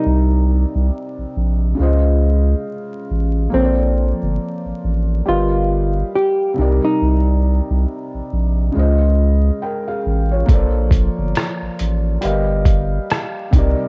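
A dark, clean hollow-body jazz guitar carries the melody from the opening moment, with a cassette-tape tint and a low-pass filter, over a soft, felt-muted upright piano that sounds intimate and mellow through its own low-pass filter. This cosy, nostalgic lo-fi hip hop excerpt moves at 69 BPM in 4/4 with a swung sixteenth-note feel, set in Bb major. A deep, thick sub bass with a saturated sine tone sits up front from the start, its fast attack giving way to sustained notes beneath a progression that cycles through Cm9, Dbmaj9, Bbmaj9 and G7alt. The fingered guitar line stops at 9.4 seconds, and at 10.5 seconds a compressed, sampler-style drum kit arrives up front with hi-hat, rim click and a thumpy, muffled kick that sounds re-recorded in a small room and passed through cassette tape. Light reverb, digital ambience and vinyl crackle wrap the whole home-cassette recording in a hazy, lived-in glow.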